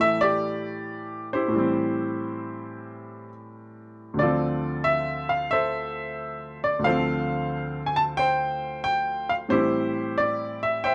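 A clear, woody upright piano sits up front in this short solo jazz passage, cut from a longer piece, carrying the whole performance on its own from 0.0 to 10.9 seconds. The mood is smoky and cool, set at 90 BPM in 4/4 with a swung eighth-note feel. In A minor, the harmony moves from Am7 to Dm7 at 4.2 seconds and returns to Am7 at 9.5 seconds. The piano ranges from D2 up to A5, spanning deep bass notes to the upper register. A light reverb gives the sound a gentle sense of space around the close, present instrument.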